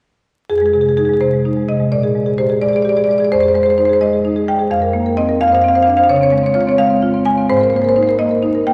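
Rubato 6/8 at 86 BPM counted in dotted quarters carries this flowing, reflective excerpt of a contemporary classical piece for solo marimba in F minor, tuned to A4 = 439 Hz, where bright, woody padauk bars struck with medium hard mallets sit up front from 0.5 to 8.7 s across a range from F2 to Ab5, moving through Fm7, Bb6, F7sus4, Dbmaj7 and Abadd9 inside a long, wet church reverb with a layer of vinyl crackle.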